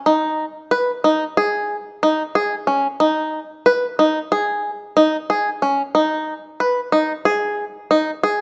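In a straight 9/8 at 183 BPM counted in eighths, this short contemporary instrumental excerpt in G# minor features a lone bluegrass banjo, played with fingerpicks, bright, twangy and percussive, sitting up front between C#4 and B4 from 0.1 to 8.4 seconds, its urgent yet pensive phrases ringing into a moderate recital-hall reverb of 1.6 seconds.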